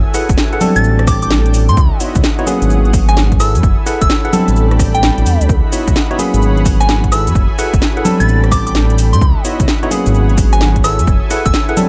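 UK garage two-step with a bouncy, skippy swing: a dark, rumbling detuned saw bass sits up front under a punchy overdriven kick and a house kit of cracking snare, metallic hats, cabasa, congas and rim click, while a worn tine electric piano stabs through minor eleventh chords, a soft FM synth bell carries the melody from 0.8 seconds, and a smooth analog pad and an ethereal, airy pad hover in the background, with the bass and both pads pumping against the kick in a dry mix.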